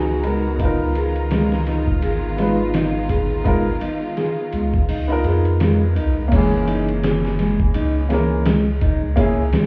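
Heard muffled as if through a wall, with club reverb and vinyl crackle, this brooding, dark trip hop fragment pairs a woody upright piano carrying tremolo, sampler grit and tape echo with fingerpicked nylon-string guitar arpeggios touched by finger squeak and delay, a round sine sub bass with tube saturation, a gritty, pitched-down sampler-style drum kit with a thumpy kick, a very quiet egg shaker, and lush bowed strings that drop out along with the shaker at 6.3 seconds when the harmony shifts to a new chord.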